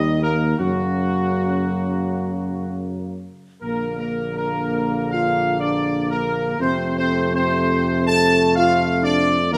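A moderate recital-hall reverb of 1.3 seconds gives this brief, 9.6-second classical ceremonial fanfare a roomy, majestic glow, as though heard from partway back in the hall. At 81 BPM in a steady 4/4, a clear trumpet section carries the melody up front, its light vibrato ringing between Gb4 and A5 with a distant, spacious quality. Beneath it, a bright, tight trombone section holds sustained chords alongside a dark, soft-edged French horn section set in the background, the horns adding a shaded depth. A present tuba anchors the bass from Bb1 to Gb2 with a solo character of its own. The harmony moves from Eb to Gb, then to Bb at 3.6 seconds and F at 6.6 seconds, giving the cut from a longer piece a triumphant, stately sweep.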